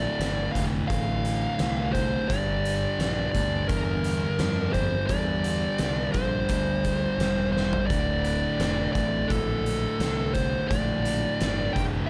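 Brooding and heavy, this 12-second stoner and doom metal excerpt in D minor moves at 86 BPM in a straight 4/4, with two thick fuzz guitars churning a low riff in the background while a dark, picked fuzz lead guitar sits up front carrying the melody through tape echo. Beneath them, a growling fingered electric bass adds a bright, overdriven edge, and an oversized low-tuned drum kit of hi-hat, kick, snare and toms pumps in a bright stone room with a fat snare, punchy kick and gritty saturation. The harmony moves from D minor to G5 at 2.3 seconds, and a drum fill at 7.5 seconds leads back to D minor, all under light reverb.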